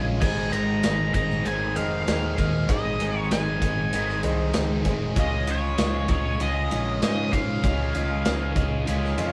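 An octave-fuzz lead guitar carries the melody in this driving, swaggering classic rock excerpt, its dark, distorted tone pushed through wah as it moves between Db5 and Bb5. Beneath it, two double-tracked overdriven guitars play riffs: one bright and run through a phaser, the other crunchier and set further back in the mix. A round, picked electric bass anchors the low end, and a grand piano with audible action noise and long sustain adds intimate accompaniment, playing a fill from 4.2 to 5.2 seconds. From 0.2 seconds a big rock drum kit drives the straight 4/4 at 97 BPM with a punchy kick, medium-tuned snare, crash and ride under a rolled-off top, while a grainy tube shaker sits very quietly close by. The harmony moves from Ab to Dbadd9 at 5.2 seconds, and the band sounds as if playing live together in one room with moderate studio reverb.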